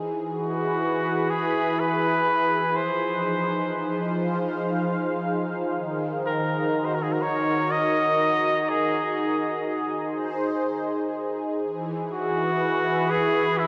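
Melancholic and reflective, this ambient excerpt drifts at 61 BPM in a straight 3/4, cut from a longer piece. A smooth, detuned sawtooth analog pad sustains chords from the very start, its slow attack and chorus giving it a softly shimmering body, with a moving notch colouring the tone. A clear flugelhorn enters at 0.3 seconds to carry the melody in a classical solo style, its light vibrato and vintage character sitting up front alongside the pad. A diffuse ambient delay trails the horn's phrases, and a huge, wet reverb with an 8.7-second decay surrounds the music in a vast, hazy space. The harmony moves slowly from E through Fm7, Ebm and Ab before returning to E.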